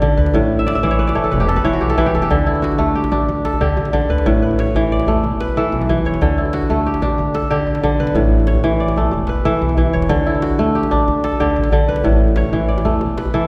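Set in a rolling 12/8 at 123 beats per minute, counted in dotted quarters with a straight feel, this cut from a longer piece of West African string and xylophone music settles into a warm, hypnotic groove in D major. The kora sits up front, fingerpicked in ringing, crisp arpeggios that span from A2 to E5, with a fill between 0.6 and 2.3 seconds. Beneath it, the upright bass plays pizzicato on gut strings, its woody, dark, thumpy tone resting in the background. The djembe stays close and tight, its hard-hand strokes cracking through until 13.3 seconds. Opening on an A5 chord, the harmony then cycles through E5, D and A across the passage, and the whole performance is bathed in the lush, lingering reverb of a church or concert hall.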